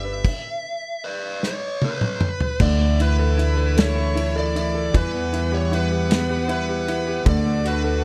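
Lightly reverberant, this heartfelt, swaying six-eight pop ballad, cut from a longer piece, sets a bluesy overdriven electric lead guitar melody, distorted and soaked in plate reverb and delay, over a clear concert grand piano with deep bass and soft-attack bowed strings floating in the distance. A woody, growly pizzicato upright bass sits up front, while a loose acoustic drum kit with dark cymbals and a punchy kick enters at 0.2 seconds and plays a fill from 1.4 to 2.6 seconds. The harmony opens free of a chord, then moves through Dsus2 and Emadd9 before settling on D.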